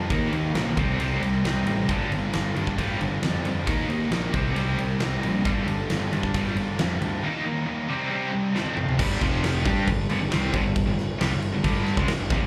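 A huge arena drum kit sits up front with a punchy kick, fat snare and bright cymbals, driving this heavy hard rock clip at 135 BPM in G minor, with a fill at 8.6 seconds leading from the Eb, Cm and Gm cycle into a stretch of G5 and F5 power chords at 9.0 seconds. A dark, round fuzz bass pushes forward beside the drums, while three picked guitar riffs fill out the sound: a high-gain distorted guitar and a tremolo-treated overdriven guitar in the background, and a tight, double-tracked distorted guitar, the three guitars sharing a slapback echo. The whole clip sounds like a live gig heard through a club PA, with small-room ambience and club reverb.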